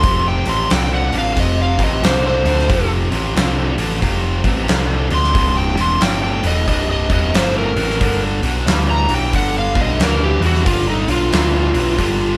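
A swung 90 BPM 4/4 groove drives this swaggering blues rock and southern rock excerpt, where an overdriven slide guitar carries the melody over a tight, double-tracked distorted riff guitar, a growling overdriven bass and a huge arena drum kit with a fat snare and punchy kick, the band playing live in a stone room as the chords move from F to C at 5.4 seconds and G7 at 8.0 seconds.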